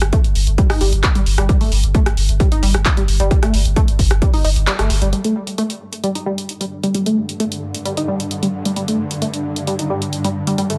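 Over a straight, driving 4/4 pulse at 132 BPM, this hypnotic, industrial peak-time techno excerpt sets a heavy, layered electronic kick and a punchy analog drum machine of handclaps, hi-hat and rim click under a tight, up-front sequenced synth riff of detuned sawtooth with chorus, phaser, delay and sidechain pumping, while a saturated, filtered sub bass pumps beneath the Gsus2 harmony until the kick stops at 4.3 seconds and the bass at 5.1 seconds, when the chord turns to G5 and a swarming, granular, detuned drone enters up front at 6.7 seconds in light reverb.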